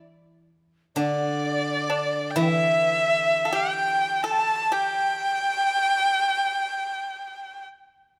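Rubato phrasing floats loosely over a slow pulse of about 64 BPM in 4/4, giving this short Chinese traditional chamber passage a pastoral yet festive air. A steel-string zither, picked with fingerpicks, opens alone at 0.0 seconds with silvery, ringing low notes as a soft accompaniment. At 1.0 seconds a single bowed erhu enters up front with the melody, its nasal, biting, earthy tone shaped by light vibrato, portamento and an airy bow. Alongside it in the same high register, a mellow bamboo dizi carries a second line from the background, its hollow sound tinged by a buzzing membrane and soft attacks. A quieter, dry and percussive fingerpicked pipa adds another second line in the middle register, while the zither drops out at 5.2 seconds. Close, detailed microphones and light reverb keep the sound intimate in this fragment cut from a longer piece.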